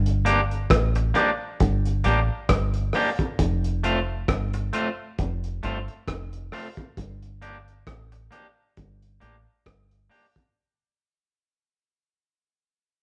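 Laid-back and serious, this roots reggae excerpt moves at 67 BPM in G minor with a swung sixteenth feel, played live by a band in one room with light reverb and fading out across its whole length. A deep, dark, round dub bass sits up front beside a cloth-damped, muffled drum kit of kick, hi-hat and rim click with a tight, gritty, lo-fi thud. A picked, twangy electric guitar at the edge of break-up accompanies over chords moving from Gm to F at 3.4 seconds and back to Gm at 7.0 seconds.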